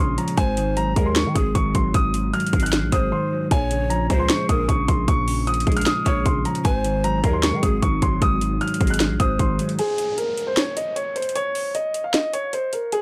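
A dark, mellow baby grand piano carries the melody from the very start, its long sustain trailed by analog delay, over a clean hollow-body electric guitar shimmering with chorus and a growling, buzzy 808-style bass, while a hard-clipped, tape-warm trap kit with sharp snare and metallic hats sits up front. This brooding, melancholic trap cut moves at 153 BPM in a half-time feel over Ab7 and Bbm7 chords, with breathy, reedy pan pipes adding a soft, vibrato-tinged second line and a brief break at 3.1 seconds. The bass drops out at 9.6 seconds, and at 9.8 the guitar and pipes follow, leaving piano and drums as an electronic downlifter falls beneath them, all captured in a dry, gritty hardware sound.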